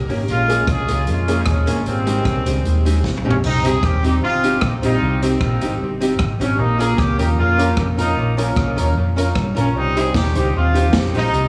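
A lightly swung ska groove in four drives this joyful, cheerful excerpt, cut from a longer piece, with a street-band drum kit of kick, snare, hi-hat, rim clicks, toms and crash cymbal sounding airy and polished in a big room, its kick boomy and its cymbals subdued. A round, punchy hollow-body electric bass, fingered and amped, sits low beneath a distant, roomy horn section that carries the melody up front with light vibrato in a pop-styled ensemble voice. In the background, a clean, picked archtop guitar and a mellow, woody, slightly detuned upright piano with a dark tone supply accompaniment and stabs, each touched by tape echo, as is the horn section. The harmony moves from Bbm7 to Abmaj7, and a drum fill from 3.0 to 3.4 seconds leads into a new section that settles on Cm before turning to Bbm at 6.6 seconds. A moderate large studio reverb and small room ambience give the whole band a lively, spacious sheen.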